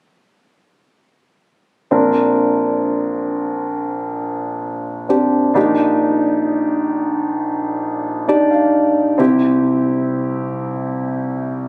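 A concert grand piano carries this brief pop passage alone, sitting up front with an intimate, polished tone, deep bass and long sustain, with its action noise audible beneath the notes. The mood is emotional and hopeful, set in a straight 4/4 at an unhurried pace. Entering at 1.9 seconds as accompaniment, the piano spans from low in the bass up into its upper middle register, moving from a Bbadd9 chord to Ebmaj7 over a Bb bass and arriving on C. A piano fill between 7.8 and 9.2 seconds leads into that final chord before the playing stops at 11.7 seconds, a fragment cut from a longer piece. The sound is wrapped in a lush hall reverb with a long tail, heard through a phone capture in the room with club reverb and compression.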